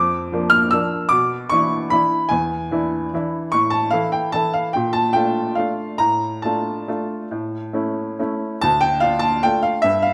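A classical piano waltz in D minor, this wistful, elegant passage moves in 3/4 with a rubato feel, its tempo drifting between 133 and 160 BPM. A single upright piano plays solo, ranging from D2 up to F6 with a bright, woody tone, short sustain and an up-front presence. The harmony travels from Bb through E7/B, A5 and Bbmaj7 to Dm/A and A. It settles on Dm at 8.6 seconds, where a new section begins. A moderate recital hall reverb surrounds the piano with a gentle sense of space. The recording is cut from a longer piece and stops at 10.1 seconds.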